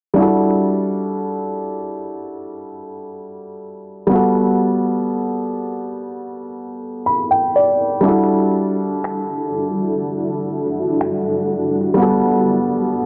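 A felt-muted upright piano, soft and intimate with a thin felt tone sitting up front, carries this sensual, longing contemporary R&B excerpt at a slow 61 BPM in E minor, tuned to A4 = 435 Hz, moving between Em11 and Gmaj9 and adding a fill at 6.6 seconds before a blurred, detuned granular cloud pad with its own reverb drifts in at 8.9 seconds and overdriven analog-sounding electronic finger snaps appear briefly at 9.0 seconds, all set in a moderate concert hall reverb with a dark, low-pass-filtered production.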